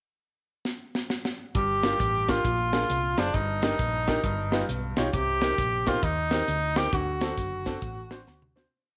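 Fervent and soulful, this short uptempo gospel piece in a swung 4/4 opens with a pickup bar where a crisp, polished fusion drum kit enters at 0.7 seconds with a fill, its high-tuned snare and tight kick set up front in an airy studio room. From 1.5 seconds the music falls into a breakdown, with the drums driving a two-beat praise groove and a bright, woody upright piano adding off-beat, closely voiced chords with long sustain. A mellow cor anglais carries the melody in a classical style, playing motif-based call phrases with light vibrato and a distant, roomy character. Underneath, a dark, round hollow-body electric bass walks and runs in gospel fashion, colored by slides and chromatic approach notes. The harmony moves through Gm7, Bb7, Ebmaj7/G, Gaug7 and Cm7 before settling on D7. A fade-out begins at 6.9 seconds, with one last drum fill closing the piece under a light studio reverb.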